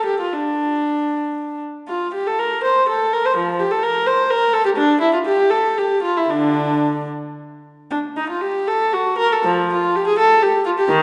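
A lone viola, close and up front, carries this grave, introspective baroque-style suite movement in D minor, its nasal, reedy gut-string tone carried on an airy bow in period style. The rubato 6/8 lilt hovers around 71-87 BPM in dotted quarters as the line ranges from D3 to C5, turning toward G minor at 7.9 s. A wet recital-hall reverb with a 1.8-second tail surrounds the player in this brief fragment cut from a longer piece, which ends at 11.0 s.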